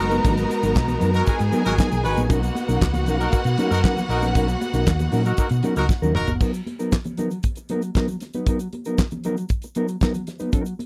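This driving, danceable disco passage, cut from a longer piece, opens with the whole band at once. A damped 1970s drum kit with a fat snare, tight kick, dark cymbals and handclaps sits up front beside a round, hollow-body electric bass and a clean, fingered electric guitar. Above them, a lush bowed violin section carries a smooth second line with vibrato, while a focused string section holds chords in the background and a mellow, roomy horn section punches out tight stabs over G#m9 and Bmaj9 harmony. High-tuned congas played with soft hands and a grainy tube shaker add very quiet percussion. After a drum fill at 5.9 seconds, the violins, strings, horns and bass drop away around 6.4 seconds, leaving drums, guitar, congas and shaker on a Bmaj7/F# chord until 10.9 seconds. The sound is dry and close, in the manner of a 1970s studio recording, with little reverb.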